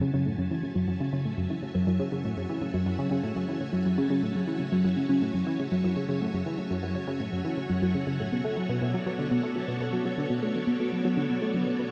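A tight, driving sequenced synth sits up front in this short cut from a longer piece of ambient, sequencer-driven space music, repeating a low riff between F#2 and A3. Its sawtooth and detuned pulse tones carry a filter pluck with a fast attack, softened by chorus, phaser and delay into a mellow, wave-folded glow. Above it, a vintage string machine playing as a full ensemble fades in across the whole 11.9 seconds, holding lush, full-bodied chords with a slow attack, a sub octave and a long release, dressed in ensemble chorus and shimmer reverb. The harmony rests on F#m7 before moving to Bm7 at 8.3 seconds, in F# minor at a straight 121 BPM in 4/4. A huge ambient reverb with a 7.3-second tail soaks the dreamy mix, leaving a mysterious, expansive mood.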